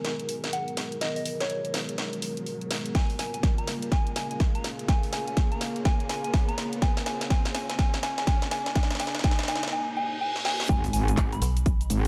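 Bass house at 124 BPM with a swung 16th-note feel, this bouncy, gritty excerpt cut from a longer piece builds over a detuned, warbling sawtooth pad holding sustained chords, a deep, moody ambient pad in the background, a soft, mellow FM bell melody treated with chorus, phaser and delay, and a tape-warm garage kit of cabasa, handclaps, hi-hat and a cracking snare, while a riser climbs from 0.3 s and a punchy, up-front electronic kick joins at 2.9 s. The harmony moves from G#madd9 to A#m, and a reverse cymbal leads into a drop at 10.7 s on G#m, where an impact lands and an aggressive, saturated wobble bass enters, joined briefly by a dark, metallic FM bass. The mix sits in light, digital-sounding reverb, with sidechain pumping on the sweeping pad, the ambient pad and both basses.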